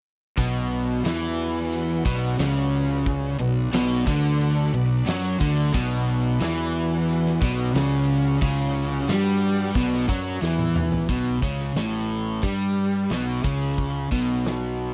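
Classic rock with a driving, brooding feel, built on a picked riff played by an overdriven electric guitar and a hollow-body semi-hollow guitar, both up front, over a growly fuzz fingered bass and a huge arena drum kit with a fat snare and punchy kick, while a very quiet, lush vintage string machine holds sustained chords until a drum fill at 10.4 seconds leads into a closing stretch from 11.1 seconds where the chords drop away and the riff carries on in a dry, close 1970s-style studio sound with light reverb.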